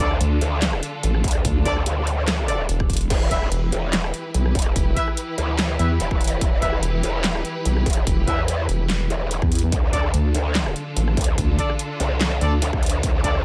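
A nasal, resonant vowel-sweep wobble bass sits up front in this heavy, chaotic wobble dubstep excerpt, entering at 0.2 seconds and carrying its dark, formant-filtered sweep through chorus and overdrive. Alongside it, an aggressive growl bass, also up front, snarls with a bright, saturated edge, likewise thickened by chorus and overdrive. The half-time groove, with a light swing on the sixteenths, comes from a punchy electronic kick and a big-room dance kit of huge snare, metallic hats, handclaps, rim clicks and crash cymbal, both re-recorded in a small room. Higher up, a warm brass ensemble fires smooth-topped stabs trailed by tape echo, while a clear, focused studio string section holds sustained bowed chords that pump against the beat under a low-pass filter. The harmony moves from D minor to E minor at 3.1 seconds and back to D minor, all set in a digital ambience.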